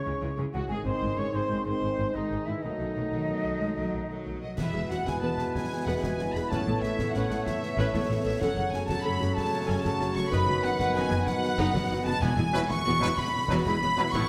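A heroic adventure film score in 12/8, this excerpt from a longer cue carries a bold, adventurous mood. A smooth, vibrato-rich violin section carries the melody, shadowed by a second line from a focused chamber violin section and a pure, silvery concert flute. Beneath them, lush violas add expressive accompaniment with soft attacks and portamento, while bowed cellos and a distant, full-bodied double bass section anchor the bass. Dark, roomy French horns and clear, vintage-toned trombones hold sustained chords, clear trumpets punctuate with stabs, and a ringing, thumb-plucked concert harp plays very quiet arpeggios. At 4.6 s, as the music settles into E major for a new section, concert snare, dark clash cymbals and concert bass drum join in the background, and timpani with calf heads add a very quiet low E at 12.2 s, all within a moderate scoring-stage reverb.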